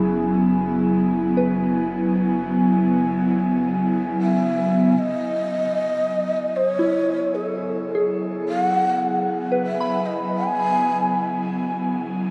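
Bathed in a cavernous cathedral reverb that suggests a vast, echoing space, this reflective, melancholic ambient fragment drifts in free time. An airy, detuned pad holds sustained chords up front while a pure FM synth bell traces gentle arpeggios through chorus, shimmer reverb and tape echo, above a round sine sub bass that sits in the background until 5.0 s and an evolving, barely audible analog drone. At 4.2 s a hollow, breathy bamboo shakuhachi with vibrato enters up front, carrying the melody through shimmer reverb and tape echo until 11.2 s.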